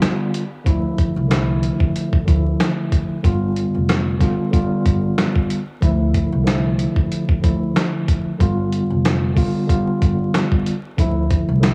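Boom-bap hip-hop at 93 BPM in D dorian, this dark, reflective cut from a longer piece swings its sixteenths. A mellow tine electric piano sits up front throughout, its warm, clean tone passed through cassette tape and built-in speakers as it carries the accompaniment over a slow alternation of G7 and Dmadd9. A dusty, sampler-style drum kit, compressed and gritty with a thumpy kick, medium-tuned snare and hi-hat, is also placed up front and sounds re-recorded in a small room. A bowed studio string section, smooth on top with vibrato and portamento, glows briefly in the background before dropping out at 0.6 seconds, and at 0.7 seconds a pizzicato upright bass enters with a woody, dark tone low in the register. Light digital reverb, vinyl crackle and small-room ambience give the whole piece a lo-fi, home-taped character.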